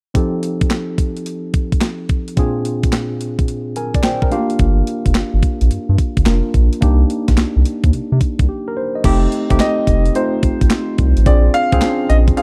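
A dry, close 1970s-style studio sound with digital ambience frames this slick, punchy new jack swing R&B excerpt at 108 BPM with a swung sixteenth feel, where a worn, slightly out-of-tune tine electric piano plays accompaniment over F7, Bb7, Gm7 and Cm7 chords beside a clean 12-bit drum machine with a thumpy kick, medium-tuned snare, handclaps, hi-hat and crash; the electric piano adds a fill at 3.5 seconds, a round, deep analog bass enters up front at 4.6 seconds, a brief break arrives at 8.5 seconds, and a natural-sounding baby grand piano with slapback echo carries a short melody from 9.6 seconds.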